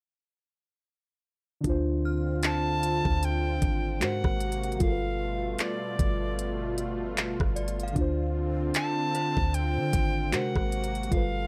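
Moody and longing, this slow contemporary R&B excerpt at 76 BPM sways with a swung sixteenth-note feel in D dorian, moving from Dm7 through G#9 and G9. Muted, felt-like synth keys with a dark, intimate tone and a chorused analog pad that warbles with vintage detuned character sit over a soft, round 808-style bass and an up-front, tape-warm electronic drum kit of knocking kick, smooth hi-hat, handclaps and rim click, all entering at 1.6 seconds. An airy, wooden soprano recorder carries the expressive melody with vibrato and delay from 2.5 seconds, while a faint, inharmonic FM synth chime rings in the background with ensemble chorus and delay, all in a dry, close sound.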